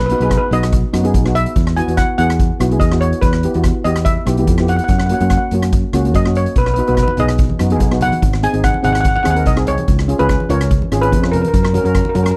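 A bright, up-front double-seconds steel pan struck with hard rubber sticks carries the melody from the very start over a dark, round fingered electric bass, opening a bouncy, carefree calypso excerpt taken from a longer piece. A second, full-bodied pan played with medium rubber sticks adds a shimmering metallic accompaniment, while a polished, airy street-band drum kit with a boomy kick, hi-hat and rim click sits prominently in the mix. At 7.1 seconds, low-tuned, thick-skinned congas with a saturated, compressed tone join in the background, all within a dry, close 1970s-style studio sound.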